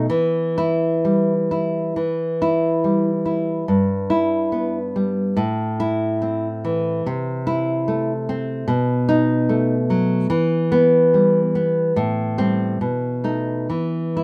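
Melancholic and passionate, this romantic piece for solo classical guitar unfolds in E minor at a flexible 62-75 BPM, its 2/4 pulse stretched and pulled by rubato. A single nylon-string guitar plays from 0.0 to 14.2 seconds, fingerpicked and up front, with a dark acoustic tone that sits between G2 and E4. Small finger squeaks on the strings add intimacy to the sound, and light reverb gives it a gentle sense of space. After a brief opening, a new section begins at 2.0 seconds, moving from E minor through A minor to B7 before settling back on E minor, then passing through Am7 and B7 once more. This passage is cut from a longer piece.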